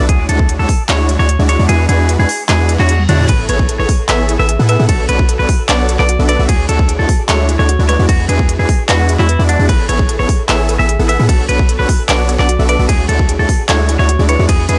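A bright, twangy clean electric guitar melody with 12-bit sampler grit and delay opens over huge, detuned supersaw chords and a deep, boomy 808-style bass, all pumping to the sidechain in a lush, euphoric future bass cut at 150 BPM with a half-time feel, cycling through Dmaj9#11, E9, Amaj9 and Bm9. The hard-clipped kick sits up front alongside the bass and drops away briefly while a background reverse cymbal and a drum fill lead to 3.3 seconds. There a round, tine-like FM pluck enters with chorus and dub echo for gentle arpeggios in the background, while a trap kit with crisp hats, handclaps, toms and crash keeps a dry sound throughout.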